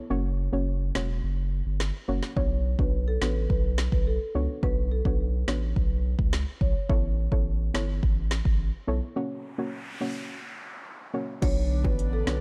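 A soft, round pluck with a touch of chorus opens this hypnotic, sultry dancehall excerpt, joined almost at once by a thick, saturated sub bass sitting up front in the mix. At 1.0 seconds an electronic afro-pop drum kit arrives with a deep kick, woody snare, crisp hats, rim clicks and crash cymbal, giving the groove its straight, unhurried footing over chords moving from F# to Bm(add9) and A(add9). A woody marimba carries the melody with a delay trail, playing from 2.4 to 6.7 seconds in a narrow upper register before falling away. A brief electronic noise sweep fills the break near the end, and at 11.4 seconds the marimba returns alongside an airy, breathy pad pumping under sidechain and low-tuned bongos tucked very quietly into the background. The production is dark and warm, with little reverb.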